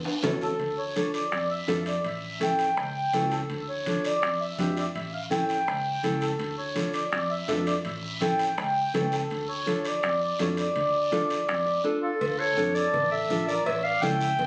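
Captured on a phone in a large studio with moderate reverb, this driving, danceable cumbia excerpt in D harmonic minor at 165 BPM opens with a drum fill, then ringing metal-shell timbales and cowbell, damped thick-skinned congas and a raspy guiro sit in the background beneath a round, foam-muted fingered electric bass and a small fingerpicked nylon-string guitar with audible finger squeak, while a reedy, slow-beating mellow accordion carries a solo up front over alternating Dm and A7 chords until a guitar fill at 11.5 seconds and a roomy, soft-attack classical-style clarinet melody entering at 12.0 seconds.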